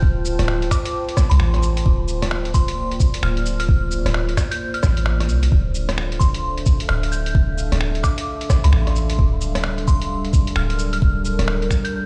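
Future garage at 131 BPM in D minor with a 16th-note swing, rainy and nocturnal in mood, where an overdriven, knocking electronic kick and a deep, round 808-style sine bass sit up front with sidechain pumping on the bass and the dark, detuned analog pad, while a muffled, tape-warm sampler kit of cabasa, finger snaps, hi-hat and rim click enters at 0.3 seconds and a crystalline FM bell melody with chorus and analog delay floats above chords moving from F/D through Bbmaj7/D and Dm7 to Gm7/D, the whole cut heard as if played through a big sound system in a bare stone room.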